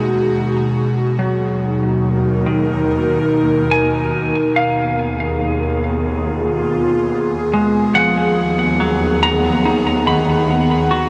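This ambient piece moves at a slow 71 BPM in a straight 4/4, with a melancholic, reflective mood, tuned to A4 = 443 Hz and cut from a longer work. An airy, breathy pad sits up front, sustaining soft, detuned chords with a slow attack, long release and chorus, through a progression from Emaj7/D# to Ebm, then Abm6/Eb at 4.6 seconds and Abm7/Eb. A bright, clean semi-hollow electric guitar fades in across the full 11.1 seconds, its picked, compressed arpeggios carried on delay and also placed up front. Beneath them, a dark symphonic cello section holds a bowed D#2 bass with expressive vibrato, its lush ensemble tone given tube saturation. A huge, wet reverb with an 8.1-second decay surrounds the whole arrangement, blurring the parts into a slow, drifting haze.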